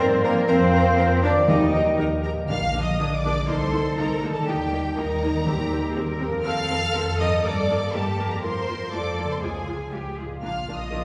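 Adventurous and triumphant, this heroic film-score excerpt moves at 121 BPM in Eb lydian, with a lush studio violin section carrying a vibrato-rich melody over a second symphonic violin line, a background viola section, and a bass of cellos and distant double basses, while a concert harp rings out fingerpicked arpeggios throughout. In the opening seconds, a dark clarinet, airy flute and warm oboe add second lines, mellow French horns and trombones hold sustained chords, and a trumpet section punctuates with stabs, before the strings and harp continue. Soft-mallet timpani with round calf heads enter at 1.5 s and stop at 6.2 s, all within a reverberant concert-hall space.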